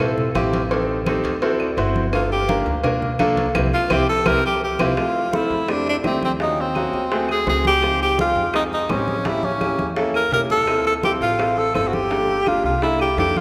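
A clear, up-front tenor saxophone enters at 2.1 seconds with vibrato, soft attacks and scooped notes, carrying the melody in this danceable, sophisticated Afro-Cuban jazz excerpt at 168 BPM in F major. A natural-sounding baby grand piano comps through rich jazz changes beneath it, supported by pizzicato upright bass with a woody tone, bright hard-handed congas, background claves, and very quiet, tight, high-tuned cowbell and bongos that join at 0.4 seconds. A drum fill and a band accent mark the turn into the second section at 5.0 seconds, and the whole ensemble sits in the wet, lingering reverb of a church or concert hall.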